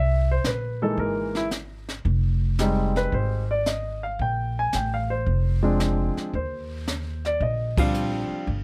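A jazz piano trio swings at 112 BPM in 4/4, with a cool, swinging mood in this short passage cut from a longer piece. The grand piano carries the melody from the start, its tone present and polished with a short sustain, sitting up front over a progression that moves from C7alt through Fm9 and Bb9 to Ebmaj13. The upright bass plays pizzicato beside it, woody and steel-strung, also close and forward in the mix. The brush kit joins at 0.4 seconds, set a little further back, with a high-tuned snare, punchy kick, hi-hat and dark ride cymbal played with brushes in a small-room sound. The whole band hits an accent together at 7.7 seconds, and light reverb gives the trio a gentle sense of space.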